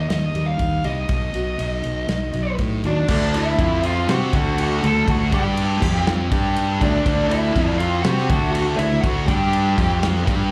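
A dark, distorted lead guitar carries a bluesy melody with slapback and tape echo from the opening, over full-bodied acoustic guitar arpeggios and a round, punchy fuzz bass up front, as a loose indie drum kit with a tight kick and rolled-off top joins at 0.1 seconds. At 3.1 seconds the acoustic drops out and two thick fuzz guitars take up a riff in the background, one bright with slapback echo and the other dark, pushing this cathartic, anthemic quiet-loud alternative rock at 121 BPM into its heavier half. Heard through a club PA with light reverb, the chords move from Eb and B to a churn of D, F and G power chords.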